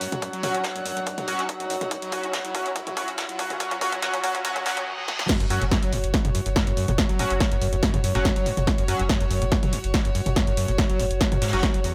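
Lightly reverberant and high-passed, this excerpt of dark, hypnotic peak-time techno opens on a build-up where a background riser and reverse cymbal, a faint wave-folded drone, a distant brush kit and the up-front fills of a punchy analog drum machine surround a squelchy, screaming distorted acid line, a layered electronic kick, edgy sync-swept polysynth stabs and earthy bowed chamber strings, until the drop at 5.3 seconds brings in a round, overdriven, sidechain-pumped sub bass.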